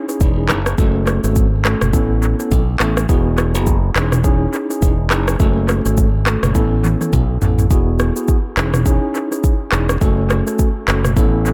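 A produced, electronic afro-pop drum kit sits up front with a deep kick, handclaps, rim clicks, shaker and toms, all touched by dub echo, and it rolls into a fill at 6.6 seconds before the second section begins at 7.7 seconds. Alongside it, a bright, punchy fingered electric bass plays low and direct, while a mellow tine electric piano, clean and heard as if through built-in speakers, carries the chords with its own dub echo. This breezy, romantic afrobeats cut moves at 104 BPM in a swung 4/4, tuned slightly flat to A4 = 437 Hz, cycling through C#madd9/E, F#m, Aadd9 and Eadd9 in an echo-heavy mix with light digital reverb.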